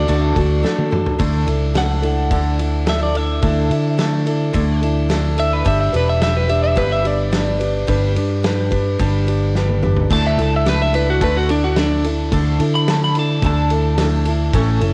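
A clean, compressed twelve-string electric guitar carries the melody through this short, nostalgic folk rock and heartland rock excerpt. Its jangly picked lines are bathed in spring reverb and open into a solo at 1.2 seconds that runs to the end. Underneath, a bright, boxy parlour steel-string acoustic guitar is picked up front, with finger squeaks audible through a cassette tape coloring. A round, punchy fingered electric bass sits forward with a dark, amped tone and is the loudest part. A loose indie drum kit enters at 0.1 seconds, sounding distant and roomy, with dark cymbals, a fat snare, a tight kick, a rolled-off top and the same cassette grain, and it plays a fill at 9.6 seconds. The straight 4/4 groove moves at 108 BPM in D major, shifting from D to Dsus2, G and back to Dsus2, and the dry home cassette recording gives the piece a homespun character.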